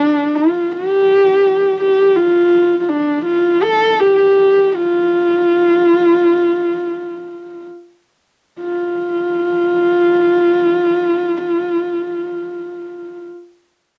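A single dark, husky horsehead fiddle carries the melody up front in this galloping, vast Mongolian traditional piece, its airy bow, soft attack, light vibrato and portamento heard close and intimate in a moderate booth ambience on a home cassette recording, slowing from 2.1 to 8.6 seconds before a second section begins and the clip cuts off at 13.2 seconds.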